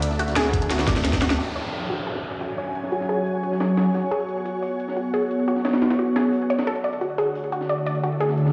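A straight 176 BPM drum and bass pulse in F# minor drives this dark, tense, mechanical excerpt, where a gritty, pitched-up breakbeat kit runs throughout beneath a lush detuned unison pluck arpeggio with tape echo and an ethereal airy pad, while an up-front metallic wobble bass, a pulsing pluck wobble bass, a cracking drum and bass kit and a knocking electronic kick crowd the opening with a drum fill before, at 1.4 s, an evolving, resonant sawtooth pad enters, filter sweeps moving across it and the arpeggio, joined by a brief electronic downlifter, with the pads and pluck pumping in a stone room.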